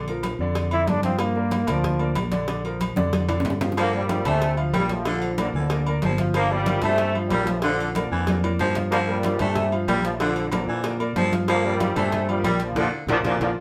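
A live-in-one-room sound with a wet studio reverb carries this joyful, sunny salsa, where a bright, close-miked solo trombone sings briefly near the start before a loose, roomy trombone section and a raspy, gritty baritone saxophone take over at 3.8 seconds, all riding on a clear, worn grand piano, a round, punchy fingered electric bass up front, tight, high-tuned cowbell and bongos, ringing congas and metal-shelled agogo bells and timbales set back in the mix, with drum fills and a closing band accent.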